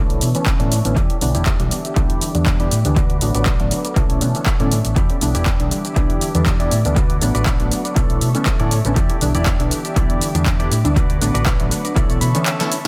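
Heard through light reverb in an echo-heavy mix, this nostalgic, groovy filtered disco house piece in E dorian rides at 120 BPM with a gentle sixteenth-note swing. A filter sweep runs across the whole passage while the chords cycle through Bm11, Em7 and D6. A punchy electronic kick and an analog drum machine with handclaps, hi-hat, shaker and a punchy snare drive the groove, beneath a round, dark hollow-body bass with tube saturation and a detuned sawtooth-and-square polysynth comping in filter plucks through chorus, phaser, cassette tape and delay. A bright, clean semi-hollow guitar riff with spring reverb adds a fill at 12.0 seconds before a drum fill at 12.6 seconds, while a smooth bowed violin section holds sustained chords in the background.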